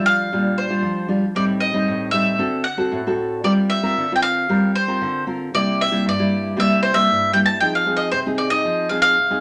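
A bright, picked bowl-back mandolin with its doubled strings carries the melody up front over a warm, fingerpicked classical nylon-string guitar from the very start of this bittersweet yet lively samba fragment at 115 BPM in 4/4. The pair moves through Bb6, Am7b5, D7, Gm7 and C7 before shifting to a new section on Fm7 at 7.6 seconds, all set in a wet studio reverb with a faint mains hum beneath.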